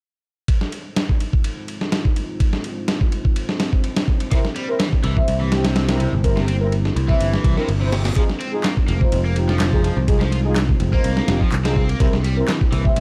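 A dark analog pad with chorus, sampler grit and sidechain pumping holds moody Fm7 and C7 chords beneath a gritty, up-front soul sampler-style drum kit with a thumpy kick, medium-tuned snare and ride cymbal, driving this swaggering, energetic F minor breakbeat at 125 BPM with a light swing, before a double-tracked, overdriven stack guitar riff with phaser and delay and tight, mellow brass stabs arrive at 4.3 seconds, a bright, growly picked electric bass joins at 5.0 seconds, and a reverse cymbal leads into a second section where overdriven electronic handclaps enter at 8.6 seconds.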